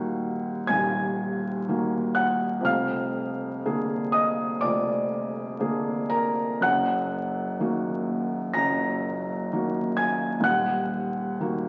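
A felt-muted upright piano plays alone and up front, its soft, mellow tone carrying audible action noise through a yearning, melancholic romantic nocturne in Eb minor, taken from a longer piece. At 55-65 BPM in 4/4 with a rubato feel, it moves from Ebm through Bb7/F and Ebm/Gb before settling back on Ebm at 10.5 seconds. A wet scoring-stage reverb surrounds the piano, and the sound of a very old 78 rpm record adds vinyl crackle and a dull, muffled top end.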